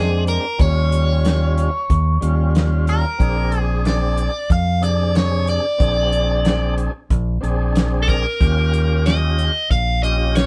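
A swaggering, rollicking straight-eighth soul blues excerpt in Bb mixolydian at 92 BPM, played live in one room with light reverb, moving between Bb7 and Eb7. An up-front, biting overdriven guitar carries the melody through a phaser, while a thick tonewheel organ fills in beneath it through a slow rotary speaker with a touch of grit. A round, dark fingered electric bass sits forward in the mix, and a dry soul drum kit with a fat snare, tight kick and rolled-off top joins at 0.3 seconds.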